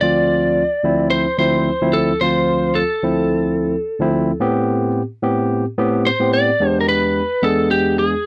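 A lightly driven electric lead guitar carries the melody in this smoky, mournful blues excerpt, its picked, compressed tone slightly broken-up and placed up front between G4 and D5. Beside it, a bright tine electric piano plays the accompaniment through a combo amp, its barky, lightly overdriven voice reaching from D2 up to G#4. The tempo sits at 109 BPM in 4/4 with a gentle swing on the sixteenths, and the harmony moves from Dm7 to Am7 at 4.4 seconds, then to E7#9 at 6.6 seconds. The piano drops out at 8.1 seconds while the guitar holds on until 8.3 seconds, where this cut from a longer piece ends. The sound is dry and close, like a 1970s studio session, with just a light touch of reverb.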